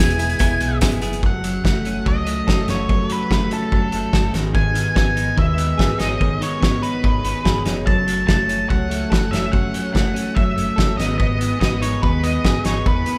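An up-front indie rock drum kit with a punchy kick, a fat snare and a rolled-off top drives this bittersweet, moody excerpt at 145 BPM in F# dorian, heard in a moderate recital-hall reverb. A bright, twangy clean electric guitar picks a compressed riff with vibrato beneath a dark octave-fuzz lead melody, while a round, amped fingered bass and a shimmering, retro, soft-attack pulse-width pad with chorus sit underneath. A jingly tambourine appears briefly between 0.2 and 1.1 seconds before the chords settle into a shifting F#m and G#m from 1.2 seconds.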